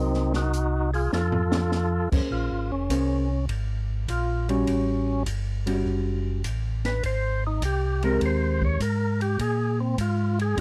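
A loose swing in 4/4 carries this late-night, bluesy soul jazz organ trio fragment, with an open acoustic drum kit of dark cymbals, a high-tuned snare and a boomy kick that slips in at 0.1 seconds and plays a short fill at 1.1 seconds. A mellow, round tonewheel organ holds down the bass up front, softened by chorus vibrato and a slow rotary speaker, while a dark, fingered hollow-body electric guitar comps underneath. A full, percussive tonewheel organ with audible key click and a slow rotary speaker carries the melody and opens into a solo at 2.3 seconds, all set in a dry, close 1970s-style studio sound with light reverb.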